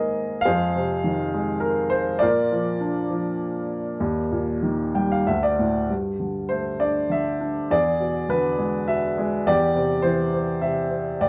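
A dark, warm production places a woody, polished upright piano up front in a small room with moderate reverb, its long sustain ringing through this short cut from a longer classical piece. The solo piano plays lyrically in 3/4 with a rubato feel, drifting between roughly 94 and 106 BPM across chords moving from Fm7 through Bb and Eb. After a fill from 4.6 s, the music settles into G major at 5.9 s, passing through Gsus2, E7 and Cadd9/E with a hopeful, sunny glow.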